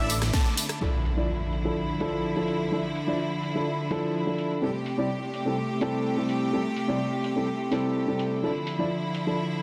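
A dark, boxy grand piano sits up front from 0.8 s, its delayed, sidechain-pumped accompaniment riding over clear, biting studio strings that hold sustained chords through this emotional, euphoric festival progressive house passage in D minor at 126 BPM. The opening half-second packs in a huge, detuned supersaw riff with phaser and filtering, a warbling, vintage unison lead arpeggio in the background, and a fat, saturated analog bass note, before an up-front electronic impact lands at 0.8 s as the chords move from Asus4 to Dmadd9 and Am7/C. A layered house kit with a cracking snare, warm hats, ride, rim click and tambourine plays under it all, glued by a lush hall reverb and a dense, heavily limited master.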